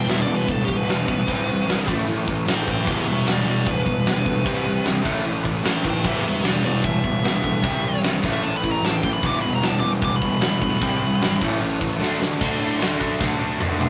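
Punk rock in E minor at 151 BPM, raw and urgent, with a biting overdriven lead guitar soloing over a bed of three picked, distorted and overdriven rhythm guitars (one double-tracked, one very quiet and compressed) and a growly fuzz bass. The big acoustic drum kit sits up front with a fat snare, tight kick and rolled-off top, throwing fills at 12.0 and 13.2 seconds as the solo ends near 11.5 seconds and the chords turn from the Em–C–A5 cycle to D. The whole cut has the rough, tube-saturated feel of a rehearsal room with moderate ambience, and it is taken from a longer piece.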